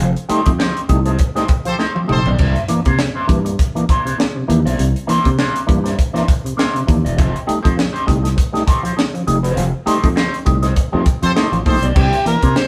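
A strutting, energetic funk groove at 100 BPM with a swung sixteenth feel opens on a growly fingered bass, a dark wah-treated guitar at the edge of break-up and overdriven tonewheel organ stabs through a slow rotary speaker, joined by a crisp fusion kit with a high-tuned snare and tight kick, while a punchy horn section accents at 1.7 seconds over the band's hits and a gritty, amplified harmonica with tongue slaps takes the melody at 12.0 seconds, all in a stone room under vinyl crackle over F9 and C9 chords.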